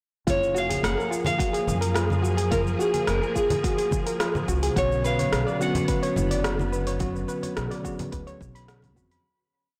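This blown-out, overdriven recording sits in a lush hall reverb, giving a short, complete sunset chillout piece a hazy glow at 107 BPM in a straight 4/4, in F# major with a slightly low tuning. A bright, fingerpicked nylon-string guitar carries a motif-based melody through a delay, while a woody, thumpy upright bass plays a dub-style pizzicato line beneath. A silky vintage string machine holds sustained chords with ensemble chorus, and a dark, round pluck spins a 16-step arpeggiated sequence coloured by chorus, delay and a cassette-tape texture. The beat pairs a soft, deep overdriven electronic kick with a light lounge pattern of metallic hats, rim and shaker from an overdriven deep house kit, and low-tuned congas played with soft hands sit close and dry in the background. At 4.7 seconds a bell-like tine electric piano enters with held rootless chords and syncopated pushes as the harmony moves from F#maj9 to Bmadd9, and the smooth, blissful groove fades out from 6.3 seconds to its close at 9.2 seconds.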